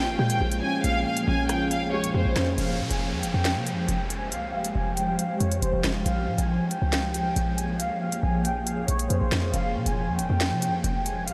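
A floating, bowed violin section sits up front, carrying the melody over a punchy, sine-based 808-style bass in this ominous, cold half-time drill excerpt at 138 BPM in F minor, moving between Bbm7 and Fmadd9. A dark, boxy grand piano accompanies only until 2.6 s, where a filter sweep begins and a background downlifter runs to 6.1 s, while a cloudy, detuned granular pad with tremolo holds sustained chords and a drill kit brings a sharp snare, crisp hats, handclaps and rim clicks. The dreamy mix is soaked in a huge ambient reverb and carries lossy compression artefacts.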